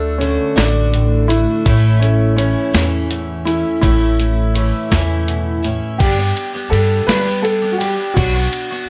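A growly, up-front pizzicato upright bass with steel strings anchors this hopeful, nostalgic indie folk piece in a straight 6/8, taken from a longer work with an arrangement that builds. Above it, an intimate upright piano carries the melody, its boxy tone, long sustain and audible action noise giving the line a close, homespun quality. A fingerpicked old ladder-braced guitar adds dark, woody accompaniment on aged strings until it drops out at 6.0 s, where the harmony moves from D and A to G. A picked jumbo twelve-string plays throughout, its bright, octave-doubled shimmer filling out the texture. From 0.2 s, a gritty, compressed sampler-style drum kit sits up front with a thumpy kick, a medium-tuned snare, hi-hat and ride, and a studio reverb adds space around the band.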